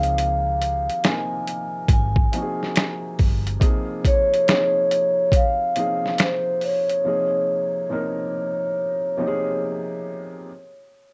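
A soft-mallet vibraphone carries the melody up front, its metallic ring kept mellow by a low-pass filter and trailed by an analog delay. Beneath it, a felt-muted upright piano plays a hushed, intimate accompaniment with audible action noise, dulled by cassette tape and a low-pass filter and set in plate reverb. A dark, round, foam-muted electric bass gives punchy, amped support until 3.6 seconds. A compressed, pitched-down boom bap drum kit with a thumpy kick, medium-tuned snare, hi-hat and finger snaps sits forward with gritty cassette colour until 7.0 seconds. The swung lo-fi hip hop groove feels hazy and nostalgic as the harmony moves from Dbmaj7 to Bbm11/C to Bbm7, captured as a light-reverb home cassette recording cut from a longer piece.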